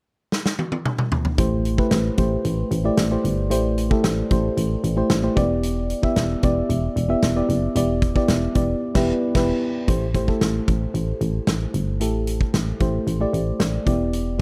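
A mellow FM electric piano supplies the accompaniment in this moody, nostalgic slice of 1980s-style pop, its soft, full-bodied and dark tone thickened by chorus and a faint noise layer, with each note striking quickly and then decaying. A big rock drum kit opens the clip alone with a fill at 0.3 seconds, sounding natural and roomy, with bright cymbals, a medium-tuned snare and a punchy kick. The piano and a solid FM bass enter together at 1.4 seconds, the bass low, round and distinctly digital. In straight 4/4 time, the harmony moves between Am7 and Em7, and the whole band hits a shared accent beginning at 8.8 seconds before the final section. The dry, close recording places all three parts up front, giving the cut from a longer piece an intimate, studio-bound feel.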